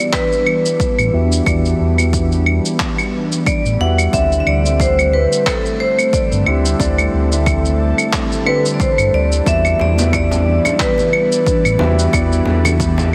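A ringing, hard-mallet vibraphone melody with delay and shimmer reverb opens this wistful, smooth sunset chillout excerpt, over a dark, boxy concert grand piano running through a filter sweep with delay and shimmer, and a breathy, detuned pad thickened by chorus and shimmer. A punchy, overdriven electronic kick and gritty handclaps, shaker and claves arrive almost at once, a round sub bass enters at 1.0 s, and distant congas slip into the background at 9.8 s, the whole mix sitting in a lush hall with a heavily compressed, radio-like sound.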